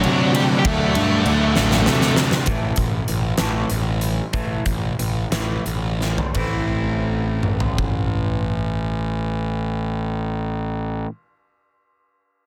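A dark, cathartic quiet-loud alternative rock excerpt in 6/8 and A dorian, around 56-66 BPM, opens on a D chord with a dark octave-fuzz lead guitar melody with slapback echo, a very quiet smooth string section, a double-tracked hollow-body guitar riff in the background, a bright fuzzed bass up front and a huge arena kit with a fat snare and punchy kick. The lead drops out at 2.1 seconds, and the strings and riff guitar follow by 2.5 seconds, leaving a clean, twangy guitar with phaser to play arpeggios over the bass and drums as the pace slows. The harmony settles on A minor at 6.4 seconds, and the drums stop at 8.0 seconds.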